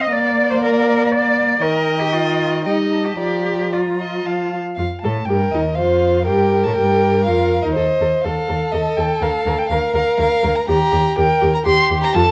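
All four bowed strings of a quartet begin together in this graceful, spirited passage cut from a longer classical-period movement, a quick piece in triple time shaped with supple rubato. The first violin carries the melody high in its range with a rich, smooth and even tone and vibrato. The second violin and viola share a warm, soft-attacked sound, each sliding expressively between notes with portamento as they fill in the second line and accompaniment. Beneath them the clear cello supplies the bass, smooth and even, sitting at a slight distance yet still up front, and reaching up into the higher register at times. The harmony moves from Bb through Eb and F before a new section opens at 4.8 seconds, passing through F7/Eb and Bb/D on its way back to Eb. A moderate studio reverb surrounds the players, and the worn sound of old cassette tape lends a warbling drift in pitch.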